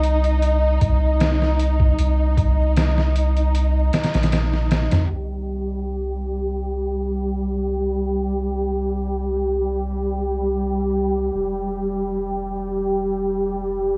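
This brooding, cinematic trip hop passage opens with a dark studio string section holding lush, woody sustained chords over a Cm harmony, joined from the start by a soft dub sub bass that sits deep and round beneath them. A sampler-style drum kit, compressed and pitched down, plays a thumpy kick, a medium-tuned snare and hi-hat, its gritty, tape-warm tone placed up front alongside the strings and bass. The drums stop at 5.1 seconds, leaving the bowed ensemble, with its vibrato and smooth top, to carry the piece with the bass as a filter sweep begins. The harmony shifts to C5 and then to Fsus2 at 11.3 seconds, while the sustained, fast-attack sub bass continues underneath until the cut at 14.0 seconds. Vinyl crackle, a low-pass filter, small room ambience and light reverb give the recording a dusty, shadowed atmosphere.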